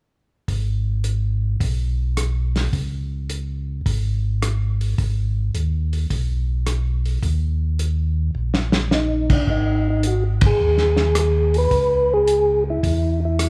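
Bluesy and smoky, this soul jazz organ trio excerpt settles into a 4/4 swing at 107 BPM in G# minor. From 0.5 seconds a round, dark tonewheel organ carries the bass line through a slow rotary speaker, its key click audible up front, while an acoustic drum kit with a fat snare, tight kick, muffled dark cymbals and a rolled-off, lo-fi top keeps time on hi-hat, ride, rim click and crash. A drum fill at 8.3 seconds sets up the entrance of a second organ at 8.9 seconds, a soft, flute-like voice with second-harmonic percussion, chorus vibrato and slow rotary swirl playing the melody in a narrow middle register. The chords move from G#m and C#5 through D#5, then shift to G#5 and C#m in the closing section, where the band hits an accent at 10.3 seconds. The trio sounds like a live performance in a large studio room with moderate reverb, the clean organs and dry drums sitting close and intimate.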